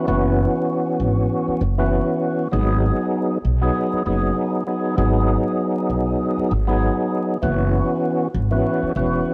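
Tough and moody, this swung boom-bap hip-hop excerpt at 98 BPM in G# minor pairs an up-front, lightly overdriven tonewheel organ, fat and percussive with key click, chorus vibrato and a slow rotary speaker, against a woody, thumpy pizzicato upright bass on gut strings, moving from F#7sus4 to G#m7 at 2.5 seconds and back at 7.4 seconds, all steeped in worn, warbling cassette tape, vinyl crackle and light studio reverb.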